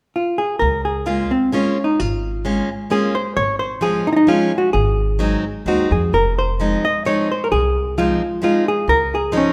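A dark, clean hollow-body jazz guitar opens this nostalgic, charming musette excerpt at 0.2 s, carrying a fingered melody in Db major at 131 BPM in waltz time. A woody, growly pizzicato upright bass joins at 0.6 s, and a picked plugged-in steel-string acoustic guitar adds accompaniment from 1.1 s with audible finger squeak. All three sit up front in a moderate recital hall reverb as the harmony moves from Db6 through Ab7 and Fm7 to a closing Dbmaj9.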